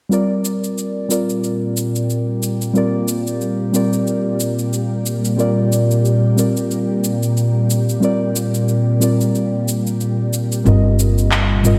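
Warm and meditative, this organic downtempo excerpt in G minor pentatonic moves at 91 BPM with a swung 16th feel, as muted, felt-like synth keys with a warbling vintage tone and delay open over a tape-warm electronic afro-pop kit of cabasa, handclaps and toms in gated reverb, an ethereal, airy pad with ensemble chorus and phaser arrives at 1.3 seconds, and a woody pizzicato upright bass steps up front at 10.7 seconds as the harmony shifts from Gm to Cm/G, all set in a bright 1980s-style digital production with plate reverb.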